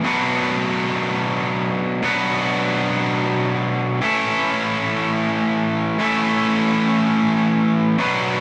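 In a 6/8 at 60 dotted-quarter beats per minute with a straight feel, this short rock fragment, cut from a longer piece, features a lone distorted electric guitar tuned to A4 = 441 Hz. Bright, picked and double-tracked, the guitar sits up front with an overdriven tone, spanning A2 to B4 as it moves from B minor to A at 4.0 seconds. It sounds like a band playing live in one room, with a wet studio ambience that lends the hopeful, euphoric mood an open, lively air.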